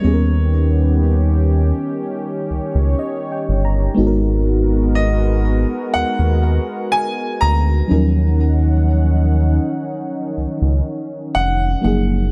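A slow, late-night contemporary R&B excerpt opens with all four parts together: a deep, up-front analog bass with a fast attack, a soft, full-bodied FM electric piano with chorus, and a smooth, nasal analog pad built from detuned sawtooth tones that fade in slowly beneath them. Above, a brilliant grand piano carries the sensual melody high in its register, trailed by delay, while the electric piano adds a brief fill from 2.5 to 4.0 seconds. The harmony moves from Eb7b13 to Abm9 at 4.0 seconds and settles on Ebm9 at 7.9, all in a light reverb.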